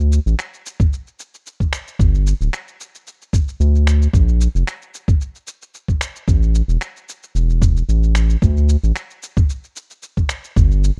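Relaxed and wistful, this short cut from a longer sunset chillout track rides a gently swung groove, with a round, deep analog bass sitting up front with a dark, sustained sine-like tone from the start. Gritty, compressed electronic shaker and finger snaps sit low in the mix, while a thumpy, tape-warm sampled kick drum joins at 0.8 s and pushes forward alongside the bass. The sound is dry and close, with the unpolished feel of a rough home demo mix.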